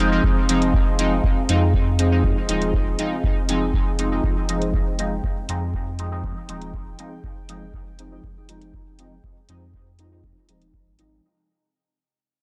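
A hazy, hypnotic dub techno passage at 120 BPM in F minor opens on an Fm7 chord, with a deep, moody pad holding sustained chords under chorus and its own reverb, while a juicy, resonant polysynth fires detuned stabs through phaser, cassette tape colouring and dub echo, its filter sweeping throughout. A smooth, clean sine sub bass sits beneath, and from 0.2 seconds a dry, deep analog kick drives the groove, joined by metallic hi-hats, with the pad, stabs and bass all pumping against the kick. The dark, warm production fades out across the whole fragment, which is cut from a longer piece.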